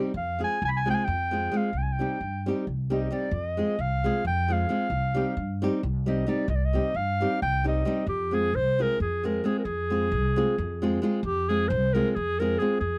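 A fiery, restless Balkan wedding-band excerpt in a straight 7/8, where a warm, classical-style clarinet leads up front with a solo through the opening 8.1 seconds over fingerpicked flamenco guitar and a woody, growly pizzicato upright bass, all close and dry in a 1970s-style studio sound.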